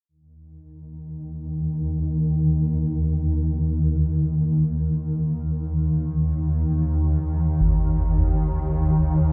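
A swarming, nasal drone rises out of silence at 1.0 s in this unsettling, cavernous dark ambient fragment. Its detuned, granular tone sits up front, in free time, and spans Eb2 to Eb3, with a filter sweep, a moving notch and a slow attack. A close, low-pass-filtered concert bass drum sounds briefly at 7.6 s, all of it sunk in a moderate plate reverb and a dreamy cassette-tape haze.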